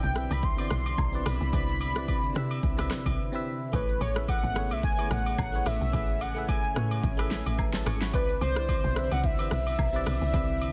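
A woody, percussive log drum bass drives this soulful amapiano excerpt at 109 BPM with a lightly swung 16th-note feel. It sits beside an up-front deep house kit with a punchy kick and a fat, soft-clipped snare, and agogo bells and woodblock join at 0.3 seconds. Above them a velvety, detuned sawtooth synth lead carries the melody with vibrato, chorus and tape echo, backed by a biting, barking FM electric piano and a lush, mellow string machine holding sustained chords in the background. The harmony moves from Cmaj9 to Amaj9 at 3.7 seconds, just after a brief break, and returns to Cmaj9 at 8.1 seconds, set in digital ambience with a dense, heavily limited master.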